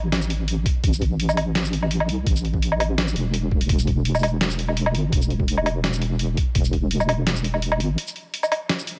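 A deep, wobbling bass opens this dark, cinematic half-time drum and bass excerpt, its detuned square-and-sine tone sitting up front with chorus and a fast attack. A gritty, pitched-down sampler-style kit of hi-hat, shaker, medium-tuned snare and woodblock arrives almost at once, joined at 0.7 s by a thumpy, compressed electronic kick, with both drum parts carrying a tape-like grain in a dry mix with a muted top end. The bass stops at 8.0 s for a short break, leaving the sampler kit to play on alone.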